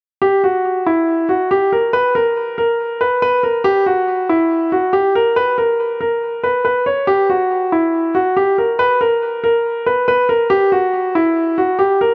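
A polished concert grand piano carries the melody from 0.2 to 12.1 seconds, sitting up front with a clear, present tone and deep bass, softened by a low-pass filter and trailed by delay as it moves between E4 and C#5. This dark, cold hip hop fragment, cut from a longer piece, moves at 140 BPM in 4/4 with a half-time feel. A small room ambience and light reverb frame the piano within a shadowy production.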